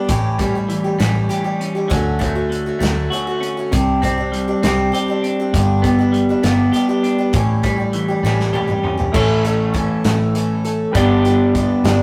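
A straight 6/8 feel drives this jangly, open-road folk rock and heartland rock excerpt, where a woody, boxy archtop acoustic and a twangy, slightly broken-up electric guitar riff sit up front over a round, foam-muted fingered bass and a loose indie drum kit with a tight kick, whose fill at 8.2 seconds leads into a new section as a clear grand piano enters in the background at 9.1 seconds, the mix captured as a rough rehearsal-room recording with light reverb and warm saturation.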